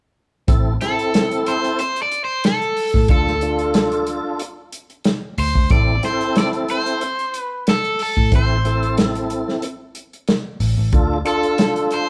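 Straight-eighth soul blues with a smoky, mournful mood, as a bright, overdriven semi-hollow guitar carries the melody up front over a lightly overdriven tonewheel organ with key click, chorus vibrato and slow rotary speaker, a dark, round, foam-muted picked electric bass, and a dry, muffled soul drum kit of hi-hat, tight kick and medium-tuned snare, the band playing live together in a large studio room that moves between A minor and D minor chords.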